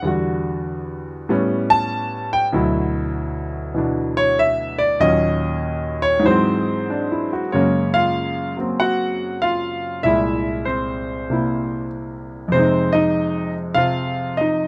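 A clear concert grand piano carries this short solo jazz excerpt alone, its deep bass and natural tone placed up front by close, detailed microphones. The mood is sophisticated and relaxed, with a swung eighth-note feel in 4/4 loosened by rubato, so the time breathes freely. The harmony moves through rich extended and altered chords, opening on Em9 and A9 before settling on D69, then sliding to Ebm7 and Abaug7. From 7.5 seconds the second passage shifts to Gbmaj9, passes through C7b13 and arrives on Fm7 at 12.5 seconds, with the piano spanning a range from its low register up into the upper middle. Light reverb adds a touch of space around the instrument while keeping the detail of the playing intact.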